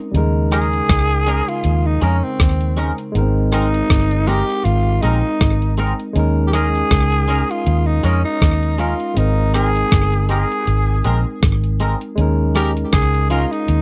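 A barky tine electric piano opens this sweet, romantic lovers rock reggae piece, bright and lightly overdriven through a combo amp as it sets out the accompaniment. A moment later a dark, round, foam-muted electric bass and a gated digital drum machine arrive, the bass amped and punchy while the drums bring a thumpy kick, hi-hat and rim click with a small-room, sampler-style sound, both sitting up front. At 0.5 seconds a growling tenor saxophone takes the melody, breathy and raspy with vibrato and a smooth top, its gritty pop-style solo voice carried by tape echo. A twangy, clean, compressed electric guitar enters at the same moment with fingered stabs coloured by analog chorus, stopping at 13.4 seconds. Relaxed swung sixteenths move over a gentle alternation of Eb7sus4 and Abadd9 in a dry, close 1970s-style studio sound, cut from a longer piece.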